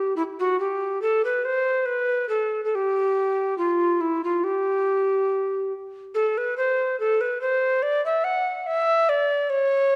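Bathed in a moderate scoring-stage reverb, this serene, flowing fragment of a baroque-style classical fantasia features a solo tenor recorder, up front and expressive, with a woody, airy straight tone, a tongued chiff and rolled-off highs as it drifts freely in rubato through the full 10 seconds.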